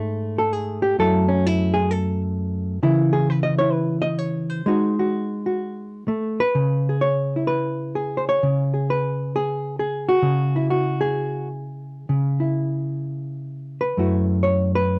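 A loose 4/4 swing at 130 BPM, pulled freely by rubato, carries this smoky, late-night solo jazz piece in C# minor, tuned to A4 = 439 Hz and cut from a longer performance. A lone fingered hollow-body electric guitar sits up front with a dark, clean voice, spanning F#2 to D#5 through chords such as F#m7, C#m and G#7b9 before reaching C#m7 at 6.5 seconds. Light reverb and the worn, warbling pitch drift of old cassette tape give the recording a faded, nostalgic cast.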